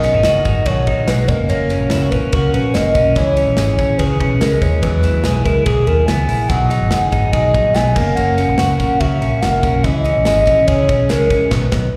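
A hollow, woody synth lead carries a breezy, nostalgic jangly indie pop melody from the opening, its chorus, vibrato and slapback and tape echoes set over a bright, twangy electric guitar playing arpeggios through a small old amp and a full-bodied steel-string acoustic guitar picked in the background with audible finger squeak. Underneath, a dark, round, foam-muted electric bass sits up front and punchy beside a tight, small-room acoustic drum kit, while a jingly, saturated tambourine sits low in the mix. The short excerpt sounds like a live gig heard through the venue's PA with recital hall reverb, and it closes on a band accent at 11.5 seconds.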